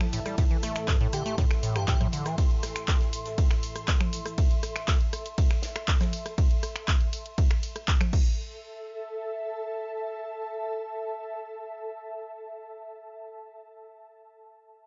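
Hypnotic and driving, this acid house excerpt moves at 120 BPM in a straight 4/4, centred on A minor pentatonic. A punchy, tape-warm electronic kick sits up front from 0.4 seconds, joined by a dry analog drum machine of congas, handclaps, finger snaps, rim clicks, hi-hat, ride and crash, while a very quiet acoustic kit adds hi-hat and snare in a small room alongside a grainy, bright cabasa. A squelchy, resonant acid bass riff with a filter sweep, phaser, overdrive and tape echo enters at 0.1 seconds but stops at 2.4 seconds. Alongside it, a detuned sawtooth pad holds sustained chords with chorus and sidechain pumping, and an ethereal, mellow pad floats higher with ensemble chorus, built-in reverb and the same pumping, lasting until 13.1 seconds. A soft, dreamy lead touches a single G4 in the background with vibrato, chorus and a cassette-tape tint, and the whole mix sits in light reverb with a softened top end.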